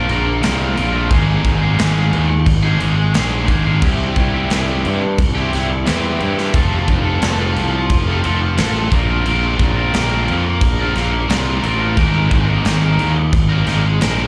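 A straight 4/4 pulse drives this anthemic, cathartic stretch of quiet-loud alternative rock, cut from a longer piece and heard as a live gig through a club PA, where a bright, double-tracked distorted guitar riff with slapback echo sits up front beside a growly, fuzz-overdriven fingered bass, while a huge acoustic arena kit with punchy kick, medium-tuned snare and crash cymbal carries the band through chords moving from Bbsus2 and Absus2 to C and F.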